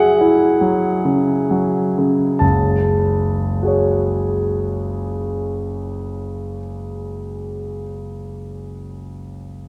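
A wet scoring-stage reverb with a long, two-second tail surrounds this short passage, placing the listener further back in the room while the piano itself still sounds present and up front. It is classical, impressionist solo piano with a nocturnal, hazy mood, cut from a longer piece and moving freely in rubato over an unusual five-beat metre. A concert grand plays alone from 0.0 to 9.7 seconds, its tone clear and natural, with a deep bass reaching down to F#1, long sustain, and a top that rises to A5. The opening phrase, built on an F#m9 chord, slows down over its first 2.4 seconds, and at 2.4 seconds a second section begins on F#madd9. The rich extended harmony and lingering resonance give the playing a drifting, dreamlike quality.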